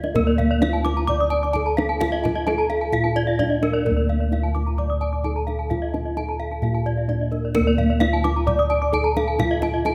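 Hypnotic and shimmering, this Balinese gamelan excerpt moves at 130 BPM in a straight 4/4 in D pelog. It opens with a kendang fill at 0.0 seconds, the deep hand drum sounding close and dry. Round, beating bossed gongs hold the bass up front with a boxy tone, while a mellow, airy bronze metallophone struck with padded mallets carries the melody. Two more ringing metallophones play arpeggios above it, a full, dry one with a wooden mallet and a bright one with a horn mallet, their paired tuning giving shimmering beats inside a moderate recital-hall reverb.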